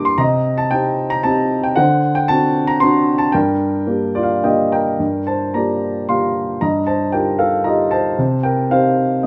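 Classical solo piano in a lyrical, brooding vein, this cool passage in 3/4 moves with a supple rubato over chords that drift from Cm through D7 to Gm. The dark concert grand sits up front, with a mellow, natural tone and deep bass, set in a moderate studio reverb. A short piano fill at 3.9 seconds leads into the restated opening idea at 5.0 seconds, and the passage, cut from a longer piece, arrives on Cm at 8.2 seconds.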